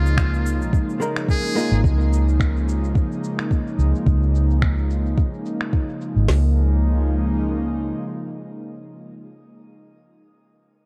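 A round, foam-muted vintage fingered electric bass sits up front under a filter sweep through the first 6.3 seconds of this relaxed, smooth sunset chillout cut in Db major at 108 BPM with a swung 16th feel. Alongside it come a smooth R&B drum kit with soft kick, woody snare and metallic hats, low-passed electronic shaker and finger snaps, and an airy, breathy pad with chorus and shimmer reverb. A brief buzzy metal-muted trumpet melody with vibrato and scooped notes rides tape echo, and a clean, picked hollow-body jazz guitar slips in at 1.0 seconds, inside a dark, lightly reverberant production.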